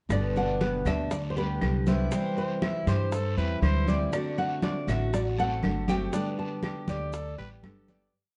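A woody, up-front upright bass plays a pizzicato tumbao that anticipates the chords in this sunny Cuban son and guajira piece, under a full-bodied nylon-string guitar melody of song-like motifs bathed in plate reverb and a fingerpicked dreadnought steel-string guitar strumming with muted slaps. A metallic Cuban tres with slapback echo enters at 0.4 s with an arpeggiated guajeo, and a gritty, growling trumpet joins at 2.9 s with punchy phrases in the melody's rests, while congas, tight high-tuned bongos, distant claves holding a two-bar time line, a raspy guiro and grainy maracas sit in the background. Worn, warbling cassette tape gives the recording a dull, drifting sound, and it fades out from 6.1 s behind a closing drum fill.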